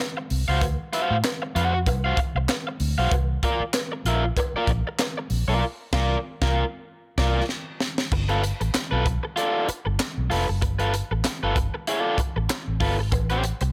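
Gritty and energetic, this funk excerpt moves at 96 BPM in 4/4 with a 16th-note swing, cut from a longer piece. A crunchy, bright overdriven guitar carries the accompaniment from the first moment, picked and up front, while a cowbell sits metallic in the background until 5.2 seconds and returns briefly at 13.1 seconds. A vintage muted fingered electric bass, dark and round with a foam-muted, amped tone, joins at 0.3 seconds alongside a crisp fusion drum kit with a punchy kick, high-tuned snare, dark cymbals, hi-hat, crash and handclaps. The harmony opens on a rootless D7#9, shifts to C9sus4, then settles on G9 for the second section before landing on A7#9 near the close. Around the midpoint the band hits a shared accent, capped by a drum fill that leads into the new section, all set in a small room with light reverb and an airy, polished studio sheen.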